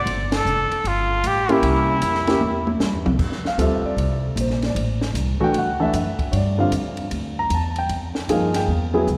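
Small-group swing and bop jazz at 153 BPM in F major, this short cut from a longer piece has a relaxed, sophisticated mood and a lilting swung feel. A straight-muted trumpet, nasal and breathy with a soft attack and vibrato, carries an intimate, whispered solo line from 0.3 to 2.8 seconds, close and up front. The pizzicato upright bass is woody and forward, with steel strings, while a compact cocktail drum kit sits further back with a dark, smooth tone, a high-tuned snare and a punchy kick, marking a band accent under the trumpet's entry and a drum fill as the melody ends. A concert grand piano with deep bass and short sustain comps from 1.5 seconds onward, moving through colors such as C7b9, F6 and Fm9. A lush church reverb gives the whole small group a spacious, hall-like bloom.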